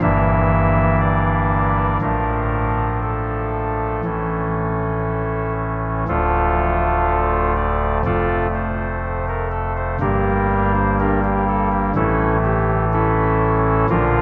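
Classical chorale-style excerpt for solo chamber organ, grave and dark, moving at 61 BPM in a straight 4/4 in D minor. A soft reed oboe stop with chamber voicing and a touch of chiff sits up front, spanning D1 to E5 as it moves from Em7b5/G through Dm/A to A, then opens a new passage at 6.1 seconds with Dm, F, Gm and a closing A. A vast cathedral reverb with a long, echoing tail surrounds the organ throughout.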